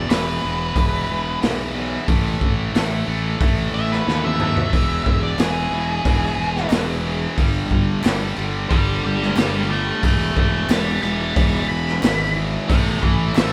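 A straight 4/4 groove drives this sunny, swaggering slice of classic rock, cut from a longer piece and played by a band live in one room with light reverb. The raw garage drum kit sits up front, with a punchy kick, a medium-tuned snare, hi-hat and toms, all saturated and gritty in a small, pumping room with a rolled-off top, and it tumbles through a fill around 4.1 seconds. Beneath it, the fingered electric bass growls with fuzz and overdrive, direct and amped and also up front. Two bright, picked guitars carry the low riff, one overdriven and the other distorted but tucked into the background. Over the E5, A5 and G5 changes, an octave-fuzz lead guitar solos with a warm, distorted tone through the whole passage. From 5.4 seconds a very quiet group handclap adds a hollow, human touch from the live room.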